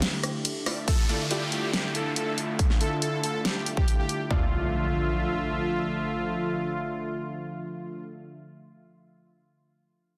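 A half-time 4/4 pulse drives this chaotic, menacing stretch of heavy wobble dubstep, cut from a longer piece. Up front, a layered electronic drum kit with a huge snare, hi-hat, ride cymbal and rim click plays from the start, while a second layer of punchy kick drum and toms joins at 0.9 s and drops out at 4.4 s. A lush, thick pad of detuned sawtooth and square waves holds sustained chords throughout, its slow attack, chorus and sidechain pumping keeping it full-bodied. A smooth supersaw melody with a sine sub octave enters at 0.9 s trailed by dub echo, as an electronic downlifter and impact sweep in alongside. In the background, a bold orchestra-hit-like stab with a noise layer, filter sweep and moving notch sounds briefly early and returns through the second section, washed in its own reverb and dub echo, inside a dense, heavily limited master with moderate plate reverb.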